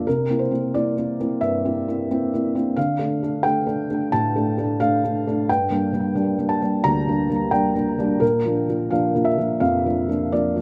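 Neoclassical minimalist piano in a reflective, melancholic mood, this short passage is cut from a longer piece and runs about 10.6 seconds. A felt-muted upright piano plays solo throughout at 88 BPM in 4/4, with a rubato feel that lets the time breathe. Sitting up front, its tone is soft and intimate, with thick felt dulling the hammers and audible action noise, touched by a trace of tape echo. The harmony moves from C7 to Dm, then Gm at 5.5 seconds, and comes to rest on Bb, while the playing spans D2 to Bb5. Light reverb and a small room ambience frame the instrument, and the rough home demo mix adds to its close, personal character.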